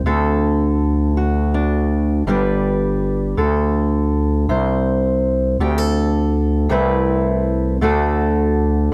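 A fingerpicked steel-string acoustic guitar with a dark, woody, old-strings tone and a thick, growling FM bass sit up front together from the first second of this pastoral acoustic folk excerpt, moving through D, G, a bare D5 and a brief chordless beat before returning to D in a slow 6/8 sway at 54 BPM, all softened by light reverb.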